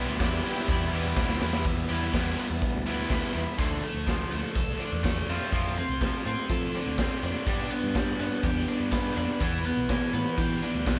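Bittersweet and cool, this indie rock excerpt moves at 124 BPM in a straight 4/4, opening on Em7 with a lush, detuned sawtooth pad, thick with chorus and phaser, that sounds very quietly and drops out by 1.6 seconds. A biting, up-front overdriven guitar and a crunchy, bright one play riffs over a growly, punchy picked electric bass. A raw garage kit, saturated and gritty with a pumping stone-room sound, arrives at 0.2 seconds alongside barely audible distant handclaps and throws in a fill before the progression shifts through Dm, F6 and G back to Em7, all in a live-band room with moderate reverb.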